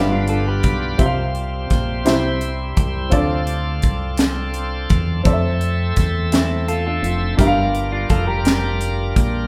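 A slow, straight 6/8 sway at 56 BPM carries this soulful, reverent gospel passage in F major, cut from a longer piece. A crisp fusion kit with a high-tuned snare and punchy kick enters at 0.3 seconds over a round, dark fingered electric bass. A baby grand piano with audible action noise and short sustain plays the accompaniment, while a bright, shouting tonewheel organ, lightly overdriven through a slow rotary speaker, holds sustained chords over a harmony moving from G7 through Csus4 and Dm7 to Fmaj7 and Gm7. A clean, twangy electric guitar adds a second line at the start and again from 6.3 seconds, with the band playing live together in a large studio room with moderate reverb.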